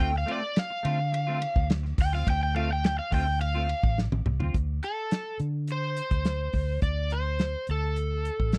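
Straight-eighth soul blues with a brooding, soulful mood, captured in a dry, close 1970s-style studio sound and cut from a longer piece. An overdriven slide guitar with a bright, biting edge carries the melody up front, soloing over clean, hollow-body stabs from a semi-hollow electric guitar with ensemble chorus that stop at 4.6 seconds, while a round, foam-muted fingered bass holds down the low end. A dark, smooth soul drum kit with a tight kick and medium-tuned snare joins at 0.3 seconds and plays a fill just before the harmony shifts from a minor seventh chord to a bare power chord.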